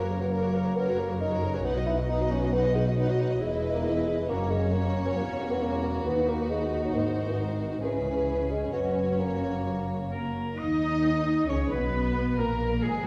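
In a straight 4/4 pulse, this spirited, graceful classical passage, cut from a longer piece, sets a lush, vibrato-laden violin section melody over a rich chamber violin line, focused violas, smooth cellos and soft-attack double basses, with a dark, up-front bassoon accompanying until 10.3 s; from 10.1 s a bright, punchy oboe, an airy flute and very quiet horns holding chords enter, joined at 10.6 s by distant trombone chords and very quiet trumpet stabs, all heard from further back in a reverberant recital hall.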